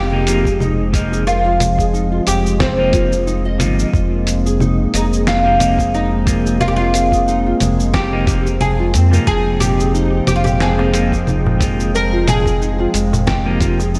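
A bright, woody oud carries the melody from the very start of this meditative, earthy organic downtempo excerpt in F minor, its double strings touched with analog delay. Around it sit a smooth, warbling vintage pad holding sustained chords with chorus and sidechain pumping, fingerpicked nylon-string guitar arpeggios set in the background, and a deep, round analog bass that sits up front. A clean, picked electric guitar adds chorused, delayed accompaniment. From 0.3 seconds a dusty, tape-warm sampler-style kit brings a fat snare with congas, hi-hat and shaker, and from 0.5 seconds a gritty, thumpy electronic kick drum sits low in the background, all at 90 BPM with a light sixteenth-note swing over a single Fm9 chord. At 9.6 seconds a very quiet darbuka joins, and a lush hall reverb soaks the whole mix in a dreamy haze.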